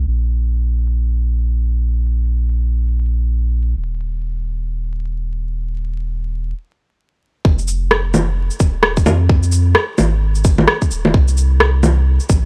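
Ghostly and melancholic, this future garage excerpt opens on a deep, round dub sub bass with transformer saturation and sidechain pumping, heard under a filter sweep that runs through the first 7.4 seconds and a stop between 6.5 and 7.4 seconds. At 7.4 seconds a tight electronic kick drum arrives, joined by a shaker, rim click and bongos, both tape-colored and up front, with the percussion and snare low-pass filtered and set in a studio ambience. The swung groove sits in a dry, gritty hardware sound dusted with vinyl crackle.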